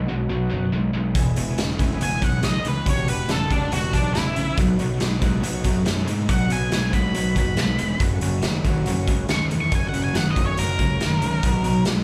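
Heard through a club's PA with light reverb around the band, this live excerpt has a swaggering, raunchy blues rock and southern rock feel in a straight 4/4, moving from B through E, Em7 and F# before settling back on B. A double-tracked, picked guitar riff with a bright, overdriven edge sits in the background from the start, over a growly fingered bass carrying fuzz. A thick tonewheel organ also sits in the background, holding sustained chords with key click, percussive second-harmonic attack, chorus vibrato and a slow rotary speaker. The garage drum kit enters at 1.2 seconds, up front and saturated, its punchy kick, medium-tuned snare and hi-hat ringing in a stone room that pumps. At 2.0 seconds a dark octave-fuzz lead guitar takes the melody, picked through wah and distortion and reaching high above the band.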